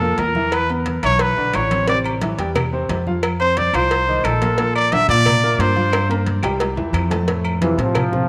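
Joyful and sunny, this short cut from a longer salsa piece opens with a bright, punchy trumpet solo up front, its close-miked tone carrying vibrato and scooped notes through a tape echo. A clear grand piano with short sustain plays the accompaniment, while a dark, woody pizzicato upright bass on steel strings sits forward in the mix. The percussion stays in the background: very quiet congas with a thin skin and a compressed, saturated edge, a tight high-tuned cowbell, ringing metal-shell timbales and agogo bells, and distant claves heard in a large room. A drum fill arrives at 5.9 seconds as the trumpet line draws to a close, and at 7.6 seconds a mellow, roomy trombone section steps up front for the final moment. An echo chamber reverb and small room ambience give the recording a lively sense of space.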